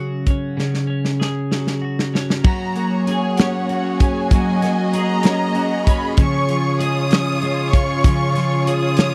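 Swaying and heartfelt, this six-eight pop ballad in F# major moves at 64 BPM, opening on a bright, twangy, double-tracked twelve-string electric guitar, joined at 0.3 seconds by up-front drums with a tight kick whose fill runs from 0.6 to 2.4 seconds, before a lush, distant violin section, smooth bowed string chords and a fingerpicked dreadnought playing arpeggios in the background all enter at 2.4 seconds over a move from C#sus4 to F#add9 and then C#, in a dry, close 1970s-style studio sound with light reverb.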